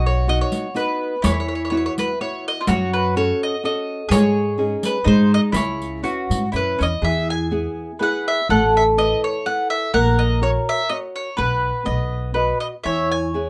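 Two picked, double-string mandolins open this romantic, passionate Italian folk serenade fragment in a lilting, swung triple time with rubato: the melody mandolin sits up front while a second mandolin plays beneath it, over a small, fingerpicked nylon-string guitar with fresh strings and a dark, woody pizzicato upright bass. A compressed, saturated riq with bright jingles and hard hands joins at 0.5 seconds and stops at 6.9 seconds, just before a new section begins at 7.0 seconds. Light reverb surrounds the acoustic ensemble.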